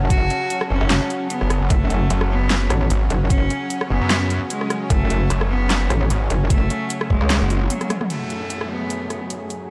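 A dark, lightly reverberant production opens this chaotic, menacing heavy wobble dubstep excerpt already at the height of its half-time drop. A metallic, FM-driven wobble bass with chorus and saturation sits up front, joined at 0.7 seconds by a snarling, detuned saw bass whose growl carries a moving notch. An overdriven, knocking electronic kick and a layered dubstep kit with a huge snare, handclaps, hi-hat, rim clicks and toms drive the groove, with a drum fill at 7.5 seconds and a band accent just before the change. Above the low end, a clear, bowed cello with light vibrato and delay carries an earthy, biting melody. In the background, a lush supersaw pad pumps against the sidechain through a low-pass filter, while a warbling, nostalgic tape-like pad adds lo-fi vintage haze. At 8.1 seconds the harmony shifts to an added-ninth minor chord as an electronic downlifter closes the passage.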